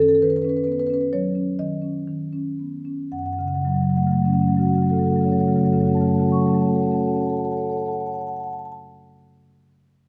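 In a rubato 4/4 that drifts between 56 and 70 BPM and slows over the first 3.1 seconds, this flowing, hypnotic fragment of a contemporary classical piece for solo marimba unfolds in F# dorian, moving from Badd9/F# to F#m at 3.1 seconds. Played with soft mallets across a span from F#2 to C#6, the rosewood bars sound woody, mellow and round, close-miked and up front. A moderate stone-room reverb frames the instrument.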